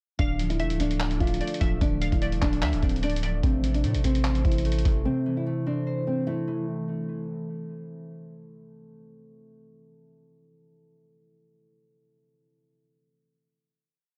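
A dark, woody nylon-string guitar loops a classical melody through analog delay over a ringing concert harp arpeggio, a crystalline, warbling wavetable pluck counter-melody, deep sliding 808 sub-bass and a muffled, thumpy sampler-style trap beat with rolling hi-hats and handclaps that drop out at 5.0 s, giving this eerie, menacing half-time hip hop piece an echo-heavy feel.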